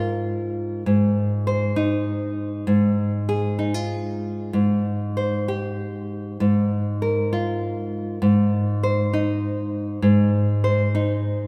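A solo nylon-string guitar opens the music, fingerpicked and up front, with a warm, classical tone in this peaceful, pastoral folk piece in Ab major. The playing moves freely in a rubato 3/4 around 99 BPM, ranging from Ab2 to C5 as the harmony circles between Fmadd11, Ab and Fm colours over an Ab bass. A long church reverb surrounds the guitar throughout this brief 11.5-second passage cut from a longer work.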